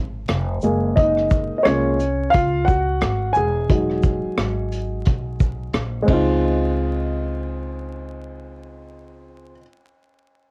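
A mellow, dark upright piano leads this cool jazz-hop excerpt, featured until 6.4 s over rich ninth chords, while a woody pizzicato upright bass holds the low end and a tight, swung vintage kit of kick, hi-hat, ride, rim click and shaker, rolled off at the top and tinted by cassette tape, plays until 6.3 s, all set in light reverb with the homespun grain and vinyl crackle of a cassette recording.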